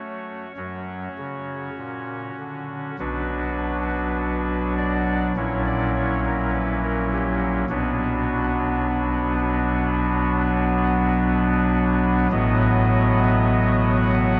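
Drenched in a vast cathedral reverb with a dark, warm production, this grave chorale-style classical passage, cut from a longer piece, moves at a slow, rubato 49-54 BPM in 4/4 and B minor. A single chamber organ carries it alone from start to finish, its soft reed oboe stop sitting up front with chiff and tremulant, spanning from deep bass up to the high treble. The harmony settles onto B minor at 3.0 seconds, moves through F#7 over A# and back to B minor, then closes on B7 over A at 12.3 seconds.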